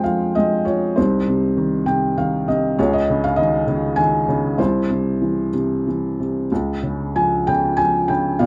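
A felt-muted upright piano opens this short classical fragment alone, playing a lyrical, cool and moody line in 3/4 at a rubato 91-104 BPM, with chords moving from F minor through C minor, D-flat sus2 and C to D-flat. Its tone is soft, boxy and intimate, sitting up front with audible action noise, and it plays a brief fill at 1.6-2.8 seconds. Light reverb and a dark production frame the 8.5-second passage, which is cut from a longer piece.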